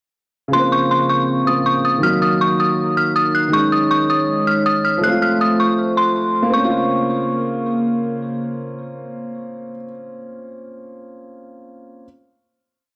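A dry, gritty recording with light small-room ambience frames this dark, brooding half-time trap piece at 160 BPM in Bb minor, where an eerie, inharmonic detuned synth bell with chorus and tape echo loops its high melody up front until 7.6 seconds, a boxy, deep-bassed concert grand piano repeats close-voiced held chords with long sustain until 12.1 seconds, and a warbling, nostalgic lo-fi pad with chorus and reverb holds slow-attack chords beneath through a breakdown that settles on a final Bbmadd9 chord at 6.5 seconds.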